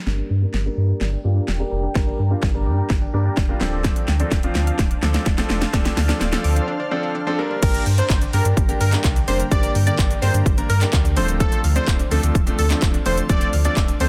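Dance-pop at 127 BPM, energetic and driving, this excerpt opens with a build-up where a clear, open baby grand piano and a deep sub bass with an octave pump under sidechain compression alongside a very quiet round analog pluck playing arpeggios, while a punchy, overdriven pop drum kit with fat snare, claps, shaker and crash runs a long fill and a filter sweep moves over Gm and Dm7 chords. A shimmering, ethereal pad with chorus and granular texture joins at 1.1 seconds in the background, and after a short break at 6.7 seconds the drop lands at 7.6 seconds, bringing in a fat, detuned sawtooth lead with vibrato and tape echo. The dense, heavily limited master keeps the up-front drums and bass dominant beneath light reverb.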